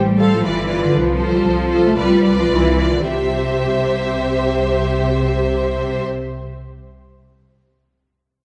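A wet concert hall reverb with a 2.2-second decay surrounds this spirited string orchestra passage, cut from a quick classical-period movement in C major. The music moves in a straight 2/4 at 104-121 BPM and slows down early on, as the harmony passes through G7, F/C and G7/C before settling on C at 3.1 seconds. Cellos and double basses open at 0.0 seconds to anchor the bass: the cellos sound lush and focused, and the double basses sound distant and expressive. The violins and violas enter at 0.2 seconds. The first violins carry the melody with an intense, smooth top, the second violins add an expressive second line, and the violas fill in the accompaniment with a close, warm tone. Every section plays bowed with vibrato, giving the lively passage a rich ensemble glow.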